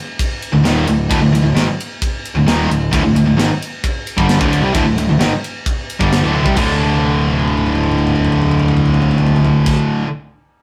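An up-front, high-gain distorted guitar leads this heavy, relentless heavy metal excerpt at 132 BPM, riffing on a D5 chord over a bright overdriven guitar in the background, a very quiet double-tracked distorted guitar, a punchy fuzz picked electric bass and a tight metal drum kit with a medium-tuned snare and rolled-off top. The kit's fill at 6.3 seconds carries the music into a new section, and more fills follow from 6.8 to 9.7 seconds, all in a rough rehearsal-room sound with moderate reverb and warm saturation.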